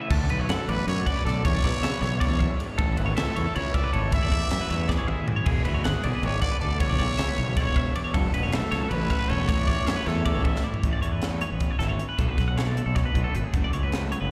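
Wistful yet bright, this math rock and midwest emo excerpt races along at 313 BPM in a straight 7/8, rooted in A major and heard as a live gig through the venue's PA with a recital-hall reverb. Two clean, twangy twelve-string electric guitars ring throughout, one comping chords beneath while a very quiet partner spins high arpeggios colored by tremolo and slapback echo. A lo-fi, double-tracked garage guitar sits in the background with an overdriven riff and its own slapback, while an up-front fuzz bass growls and punches along the low end. The crisp fusion kit sounds airy and polished, with dark cymbals, a high-tuned snare and a tight kick, and it breaks into fills around 4.9 seconds and again at 10.5 seconds. Entering at 0.5 seconds, a raspy, close-miked trumpet carries the melody with vibrato and scooped, growling notes until 10.7 seconds, just before the harmony moves from jazzy chords like E13 and Amaj7 into a closing stretch through Amaj9, Bm7 and F#m.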